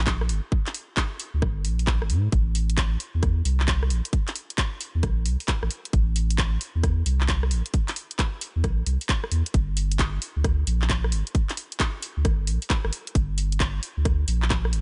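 A deep, thick saturated sub bass anchors this moody, soulful two-step UK garage fragment, sitting up front over a tight, tape-warm electronic kick and a layered garage kit of handclaps, hi-hat and rim click that swings on the 16ths, all captured dry with a dark, rolled-off top.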